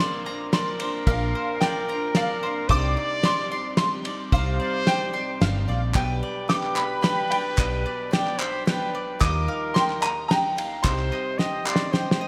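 A cloth-damped, thuddy drum kit sits up front with a fat snare, tight kick and gated reverb, joined by a round, amped electric bass, in this wistful, bittersweet indie folk passage in 3/4, cut from a longer piece with a building arrangement. An upright piano carries the woody, boxy melody through analog chorus and digital delay, while a dark trumpet with light vibrato plays a smooth second line. A picked mandolin adds bright arpeggios, and a shimmering, octave-doubled twelve-string guitar and a second piano with long sustain fill in behind; hollow group handclaps arrive at 5.9 s, a drum fill closes from 11.4 s, and the small-room sound carries a 1980s-style digital production.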